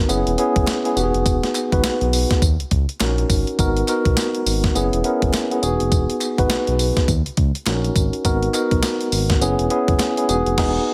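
Confident and punchy, this short cut from a longer new jack swing R&B track rides a 103 BPM groove in 4/4 with a 60% swing on the sixteenths, set in G# minor. A mellow tine electric piano sits up front with a clean tone heard as if through built-in speakers, cycling through F#7sus4, Emaj7, D#m7 and G#m7 in the middle register. Underneath, a smooth synth bass blends sawtooth and triangle into a dark, sustained tone with a fast attack and a touch of vibrato. The sampler-style 8-bit drum machine is crisp and tape-warm, placed forward with a thumpy kick, a medium-tuned snare, hi-hat, tambourine and crash cymbal, joined from 0.7 seconds by a very quiet group handclap with a human, small-room character. Light reverb and digital ambience frame the sound, and the band closes with a shared accent at 10.6 seconds.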